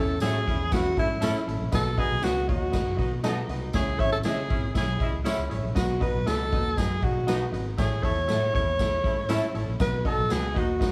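A straight 4/4 groove at 119 BPM drives this joyful, uplifting excerpt of uptempo 1960s-style soul in B mixolydian, where a raw garage drum kit with a punchy kick sits up front beside a breathy, scooping tenor saxophone melody bathed in plate reverb, while a woody, slightly detuned upright piano, a round fretless electric bass with lush chorus, slightly broken-up electric guitar stabs with analog chorus, a jingly tambourine and a punchy saxophone section playing a second line from 0.5 seconds fill out a small, reverberant room as the chords move from A to B to C#m and back.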